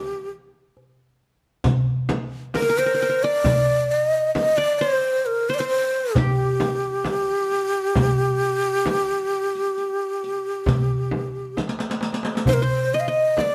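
A breathy, reed-cane ney sings a melancholic, soulful melody in 10/8 up front from the opening of this Arabic maqam ensemble excerpt, above a mellow, bright-edged second line from a plectrum-plucked qanun. A clay-shelled darbuka played with soft hands soon joins, followed at 1.6 s by a deep, compressed frame drum and a riq with dark, vintage jingles. A drum fill at 11.6 s leads into a new section where the riq falls away at 12.5 s, all captured with close, detailed microphones and light reverb.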